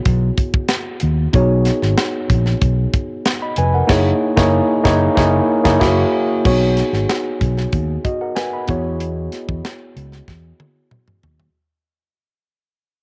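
A worn, slightly out-of-tune tine electric piano with subtle chorus sits up front in this glossy, breezy 1980s jazz-funk pop piece at 94 BPM in B major, over punchy fingered electric bass and a dry, tight funk kit with a high-tuned snare and cassette-tape processing, all bathed in moderate spring reverb with a homespun cassette sound, as the band hits accents from 3.9 seconds before the fade-out begins at 6.5 seconds and a drum fill arrives at 10.3 seconds.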